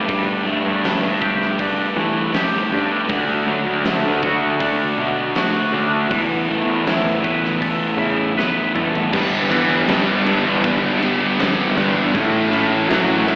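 In a straight 4/4, this bittersweet, restless piece of quiet-loud alternative rock is cut from a longer song. From the first moment a dark, thick fuzz guitar riff and a growly, overdriven electric bass sit up front, and a tenth of a second later a big acoustic drum kit enters: fat snare, punchy kick, hi-hat, ride, crash and toms, set in a stone-room ambience. Beneath them, a clean, scooped, twangy guitar plays arpeggios through analog chorus and slapback echo until 9.1 seconds. A drum fill from 8.4 seconds leads into the second section, where a crunchy overdriven guitar with tremolo and slapback echo joins a bright, double-tracked high-gain guitar riff, both in the background, over chords moving from G to A. The whole band sounds like a live gig heard through a venue's PA, with recital-hall and small-room reverb and a thin, AM-radio tint.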